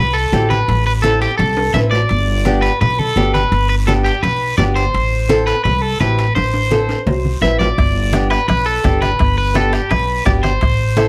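Sunny and danceable, this cumbia clip in G major moves briskly at 169 BPM, with a twangy, slightly broken-up electric guitar carrying the melody up front through spring reverb and slapback echo, while a woody, growly upright bass thumps beneath it and a bright, fingerpicked nylon-string guitar adds accompaniment from 0.3 seconds. Raspy guiro, damped low-tuned congas and ringing metal-shell timbales sit in the background, with drum fills breaking in around 1.6 and 6.4 seconds, and a soft-beater bombo joins close at 7.8 seconds as the chords alternate between Am and G. The sound is intimate and detailed, with light reverb, and the passage is cut from a longer piece.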